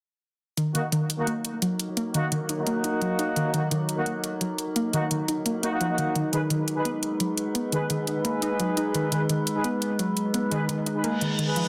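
Straight 4/4 overdriven electronic hi-hats, bright and up front, drive this dark, mechanical technical drum and bass cut from 0.6 seconds, alongside a dusty, warbling, detuned pluck arpeggio sweeping through a filter with chorus and digital delay, low-passed mellow brass ensemble stabs with light vibrato and a distant, roomy tone, and an eerie metallic, inharmonic FM drone of slow-attack sustained chords bathed in chorus and reverb, as the harmony shifts at 6.2 seconds and an electronic reverse cymbal enters at 11.1 seconds within a dense, heavily limited mix.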